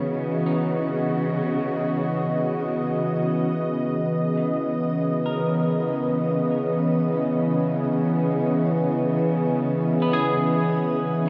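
Ambient music in free time and C# dorian, serene and spacious, heard as a short portion cut from a longer piece. Up front, an analog pad holds sustained chords, its detuned sawtooth tone smooth and warbling with a vintage character, softened by a slow attack and spread by chorus and shimmer reverb. A clean electric guitar plays picked, compressed arpeggios, colored by analog chorus, analog delay and shimmer reverb. In the background, a distant chamber cello section bows a low C#3 bass with expressive vibrato, and from 5.0 s a bright, resonant drone joins, its moving overtones, ring modulation and long release adding a slow-blooming glow. The harmony shifts from C#m11 to C#m9 at 4.0 s, and the whole mix is dreamy and soaked in a long plate reverb with a cassette-tape tint.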